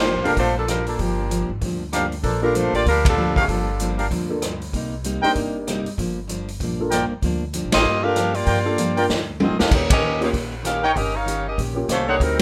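A smooth-topped saxophone section with vibrato carries the melody over a woody, thumpy upright bass from the start, joined by a full-bodied picked jumbo acoustic guitar, a polished concert grand piano, up-front jazz trumpet section stabs and a boomy, roomy big-band drum kit in this dramatic, swinging G minor big band piece at 193 BPM, where the saxophones drop out at 4.0 seconds and return at 7.7 seconds on a band accent, with a drum fill at 9.1 seconds, all in a rough home demo mix.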